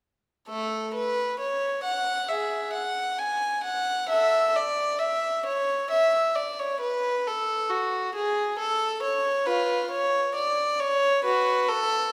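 This is a baroque-style classical suite movement for unaccompanied violin, heard as a short excerpt with a dance-like yet serene character. A single violin plays alone from 0.5 to 12.1 seconds, moving freely in a rubato four-beat metre. Its period-style gut-string tone is nasal and slightly reedy, with an airy quality to the bowing. The instrument sits close and up front, while a wet, resonant hall reverb, as of a church or concert hall, surrounds it with a lingering glow. The effect is intimate yet spacious, a graceful dance unfolding in a reverberant room.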